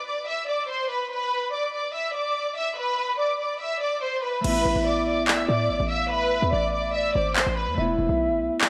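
Drill-style hip hop in A harmonic minor, this short cut from a longer piece runs at 144 BPM with a half-time feel and carries a tense, menacing mood. A lush, bowed violin section opens alone, playing the melody with vibrato and a soft attack, sounding distant yet up front, filtered and touched with delay. At 4.4 seconds the full arrangement arrives: a dark, gliding portamento lead with chorus and delay adds a smooth second line, while a thumb-plucked concert harp rings out the accompaniment. Underneath, a short 808-style bass hits punchy and tight with a fast attack and decaying tail, and an electronic drill kit sits up front with crash cymbal and handclaps, its hi-hats muted. Chords move from Bmadd11 to Asus2 and then Esus4, all set in light reverb with a digital ambience.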